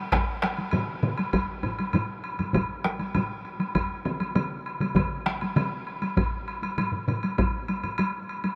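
Japanese traditional taiko drum ensemble music at 99 BPM in a straight 4/4, ceremonial and powerful, with four taiko parts struck by hard and heavy sticks, some close and dry, one up front in a live room and one in a small room, joined by a distant, woody woodblock, all set in a huge ambient reverb with an 8.0-second decay, with one taiko part dropping out at 5.7 s in this short cut from a longer piece.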